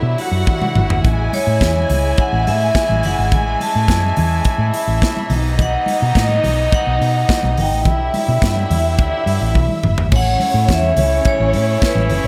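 A dark, woody string section with tape echo and a muted, nasal French horn section open this glamorous, celebratory disco excerpt over a round, hollow-body electric bass, soon joined by a punchy, up-front drum kit with fills near 0.5 and 9.6 seconds, background congas, and, from 1.3 seconds, a ringing hard-mallet vibraphone melody moving through jazzy chords like Amaj7 and B7b9 in a small room.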